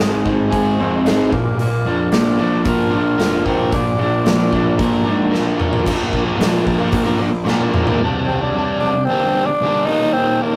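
Driving and swaggering, this classic rock excerpt moves at 112 BPM in a straight 4/4. A raspy, growling, close-miked tenor saxophone carries the melody with vibrato, riding over two overdriven semi-hollow guitars that pound out riffs, one of them pushed forward in the mix with a hollow-body bite. A fuzz-drenched picked electric bass sits in the background, while a big rock drum kit with a punchy kick and bright cymbals drives the groove and throws in fills before the sections turn. A very quiet, boxy parlour acoustic guitar adds picked accompaniment, and a lightly overdriven tonewheel organ with key click and slow rotary shimmer slips in with sustained chords at 5.6 seconds. The band drops away at 8.0 seconds, leaving the saxophone, one electric guitar and the organ over a Csus2, Gm and Eb close, all captured with a rough rehearsal-room feel and tube saturation.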